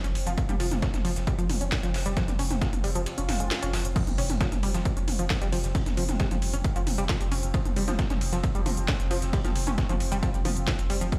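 Dark and industrial, this driving peak-time techno cut runs at 134 BPM in a straight 4/4, built on a tight, detuned sawtooth synth riff with a filter pluck, chorus, phaser and digital delay, all pumping against a thick, saturated sub bass and a deep, moody pad that evolves in the background. Two drum kits fill out the groove: a dusty, gritty sampler-style kit of hi-hats, ride and a medium-tuned snare, and a tape-warm techno kit with a cracking snare, smooth hats, crash and toms. A punchy kick sits up front from 0.4 seconds, drops out briefly before a very quiet electronic swell and impact, and returns at 4.0 seconds for the drop, all ringing in a stone room on a big sound system.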